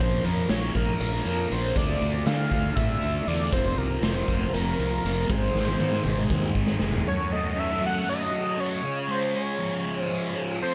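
In a straight 7/8 at 238 BPM counted in eighths, this dark, hypnotic psychedelic rock excerpt sets a gritty, boomy garage drum kit and a round, overdriven fingered bass under a thick, double-tracked fuzz guitar riff with phaser, a bold sawtooth octave-doubled lead melody with chorus, vibrato and dub echo, and a very quiet reedy combo organ holding chords, all in an echo-heavy small room, until a drum fill from 5.6 s leads the drums and bass to drop out at 7.0 s while guitar, lead and organ carry on over the Gbm and Db chords.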